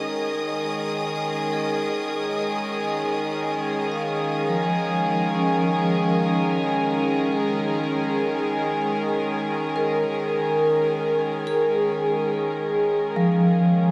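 A huge, wet ambient reverb bathes this weightless, peaceful ambient fragment in Db major, which unfolds in free time. A string section holds soft-attack, sul tasto chords that sound pure, floating and distant yet sit up front. A vibraphone with medium hard mallets fades in across the full 13.9 seconds, its metallic, ringing arpeggios carrying medium motor vibrato and trailed by diffuse delay, while a lush violin section adds quieter, expressive texture with vibrato and portamento, fading out over the same span as the harmony drifts from Absus24 through Db5 and Eb7sus4 to Db69.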